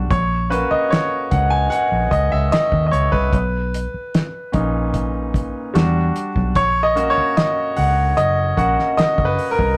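A rough rehearsal-room recording with tube saturation and a moderate studio reverb frames this brief excerpt of lush, 1970s-style soul in B major, moving at a relaxed 74 BPM with a smooth, romantic mood. A bright grand piano sits up front and carries the music as the featured solo voice throughout, its brilliant, long-sustaining tone intimate enough that the action noise is audible as it moves through D#m7/A#, Bmaj9, Em7 and F#6. Underneath, a vintage foam-muted fingered electric bass gives round, punchy low notes, while a cloth-damped drum kit entering at 0.1 seconds supplies dry, thuddy hi-hat, tight kick and a fat snare with a dark, rolled-off top.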